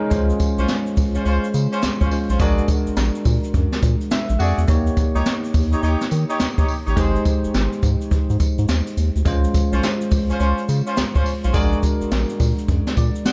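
A bell-like tine electric piano opens this flirty, upbeat R&B excerpt in the new jack swing style, its clean, up-front tone carrying a subtle chorus as it moves through Dbmaj7, Bb7b13, Eb7 and Abmaj7. Almost at once a round analog bass joins, deep and slightly nasal with a fast attack and sustained notes, alongside a jazz brush drum kit whose boomy kick, high-tuned snare, hi-hat and tambourine sound acoustic and roomy. A grainy, vintage tube shaker sits far back in the mix. From 0.6 seconds a mellow horn section adds loose stabs with light vibrato and soft attacks, distant and touched by delay. The 105 BPM groove swings its sixteenths, the electric piano slips in short fills at 3.8 and 12.7 seconds, and the production is dark, with light small-room reverb.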